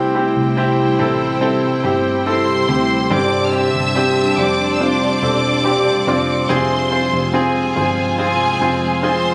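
A bright, lush violin section carries the melody from 2.3 seconds, its intense vibrato trailed by tape echo, giving this heartfelt, hopeful pop ballad its emotional lift. Beneath it, a polished concert grand piano sits up front with deep bass and short sustain, laying down the accompaniment at a slow 71 BPM in a straight 4/4. A second violin section, focused and clear, holds a quieter supporting line in the background, while an ethereal pad of detuned sawtooth and triangle tones breathes in slowly with ensemble chorus and its own reverb. A very quiet, twangy twelve-string electric guitar picks clean arpeggios, and a dark, round, foam-muted fingered electric bass anchors the low end. The harmony moves from C to Gsus4 and then to a poignant Fm, all set in a lush hall reverb, though the compressed sound was captured on a phone in the room, and the clip is cut from a longer piece.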